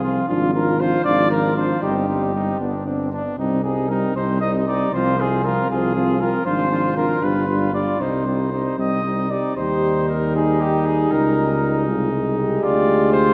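A wet church reverb with a long tail surrounds this classical brass quintet passage, cut from a longer piece. The mood is solemn and heroic, moving at 78 BPM in dotted quarters in a straight 6/8. Up front, the trumpet carries the melody with light vibrato, its tone distant and roomy, while the tuba lays down a present, warm bass line. The clear flugelhorn holds a second line, and the trombone and the French horn sit in the background as accompaniment. The horn shares the trumpet's mellow color, light vibrato and roomy distance. The harmony rests in C minor before turning to Eb major at 9.6 seconds, and it closes on a rootless Bb13 chord over D.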